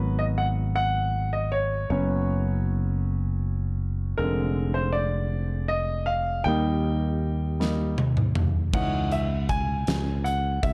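A clear, polished baby grand piano opens this melancholic six-eight pop ballad fragment, carrying a solo over chords that drift from G#m7 through F#sus4 and Fm6 to D#, while a growly, sustaining fretless electric bass sits up front beneath it. At 7.6 seconds a huge arena drum kit enters with a fill of toms, punchy kick, fat snare and crash, leading into a new section at 8.7 seconds where the piano solo continues over C#madd9. The dark, warm production adds a light studio reverb, lending the aching mood a gentle glow.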